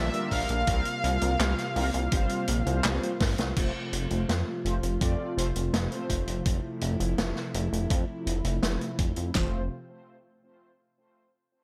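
Dreamy and uplifting, this synthwave excerpt moves at 83 BPM in F major, with a smooth, airy supersaw melody on digital delay that sounds only until 2.8 seconds, over a bold, brassy analog pad in the background carrying chorus and sidechain pumping. A glossy, nasal synth bass sits up front and pumps too, while round, dark synth brass stabs with chorus and tape echo color the harmony as it moves from Bb6 and C7sus4 to F at 3.6 seconds, just after a drum fill that begins at 3.2 seconds. Two kits drive the beat: a gritty vintage kit of crash cymbal, handclaps, hi-hat and snare with gated reverb and a rolled-off top, and a forward, overdriven pop kit with a knocking kick and fat snare.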